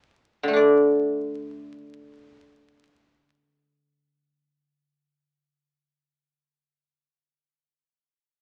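Contemplative and full of longing, this brief fragment of Chinese traditional music, cut from a longer piece, features a lone guzheng in free time. The instrument plays solo from 0.4 to 7.1 seconds, ranging from D3 up to D5, its fingerpicked strings ringing with a silvery, acoustic tone placed up front in the sound. Tuning sits slightly below standard pitch, with A4 at 436 Hz. Light reverb gives the plucked notes a little space, while the sound of a very old 78 rpm record, complete with vinyl crackle, lends the recording an aged character.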